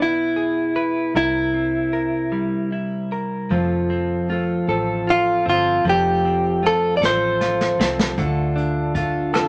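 A six-eight pop ballad excerpt with a dramatic, aching mood, opening with a clean, compressed electric guitar melody up front over a second clean electric guitar's accompaniment and a dark, round, foam-muted electric bass. A fingerpicked steel-string acoustic guitar enters with arpeggios at 3.5 seconds as the harmony moves from E/B and C7 to F, and a vintage brush kit with a punchy kick and rolled-off top joins with a fill at 7.0 seconds. The melody stops at 7.9 seconds, leaving the other parts to settle on Dm in a short studio reverb.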